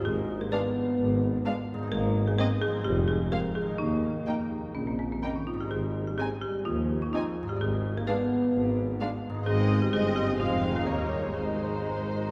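Quirky and magical, this whimsical cinematic cue, cut from a longer piece, sets a woody folk marimba melody struck with hard mallets against dark sustained French horn chords, ringing fingerpicked concert harp arpeggios, and a bass of mellow tuba with con sordino cello and double bass sections, while veiled, muted violin sections enter at 0.5 seconds with a melody and a second line over a viola accompaniment, heard in the long reverb of a church or concert hall.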